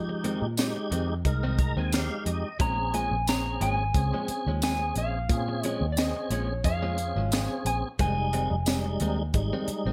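Soulful and smoky, this 89 BPM straight-eighth soul blues excerpt moves from Fm7 to Bbm7 over a tight funk kit with a high-tuned snare, hi-hat and tambourine, a dark, round, foam-muted bass, bright, compressed clean guitar stabs bathed in spring reverb, and a full tonewheel organ with chorus vibrato and slow rotary speaker that plays a fill at 1.2 seconds, before a slightly broken-up, lo-fi guitar melody with plate reverb enters at 2.6 seconds, all set in a moderate club ambience.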